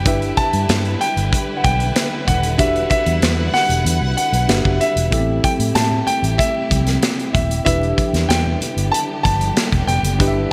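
A punchy, up-front studio drum kit with gated reverb drives this polished 1980s jazz-funk pop excerpt in E minor, entering at 0.1 seconds with hi-hat, kick and a medium-tuned snare at a straight, unhurried 95 BPM in 4/4. Sharing the foreground is a dark, round, foam-muted fingered electric bass with a vintage amped tone, while a baby grand piano with a natural, short-sustained voice carries the melody up high. A worn, slightly out-of-tune tine electric piano fills in the accompaniment through analog chorus, and a lush bowed string section holds sustained chords with expressive vibrato and portamento. Very quiet, ringing congas join at 5.1 seconds, adding a faint touch of percussion beneath the harmony as it moves through G6, Em9, Am7 and Em7. Hall reverb and a bright digital sheen give the whole passage an urban, bittersweet glow.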